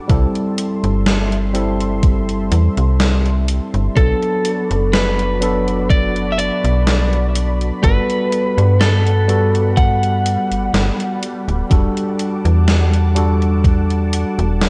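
Nostalgic and faded, this slow vaporwave excerpt moves at 62 BPM in 4/4 with a light sixteenth-note swing, set in G major and tuned slightly flat of standard pitch. A clean tine electric piano carries the accompaniment through subtle chorus and tape echo, while a thick, detuned unison pad sits low in the mix beneath it, holding slow-attack chords coloured by chorus and phaser. Up front, a snappy FM bass with a metallic attack and tube saturation anchors the low end, joined by a thumpy, tape-softened electronic kick and a gated 80s digital drum machine supplying hi-hat and a gated-reverb snare. From 4.0 to 11.2 seconds a lightly driven, slightly broken-up lead guitar carries the melody, its picked, compressed tone trailed by tape echo. The harmony drifts from C6 through Bm7 and Gmaj9 to Em11, and the whole passage has a cassette-tape character with light reverb and digital ambience.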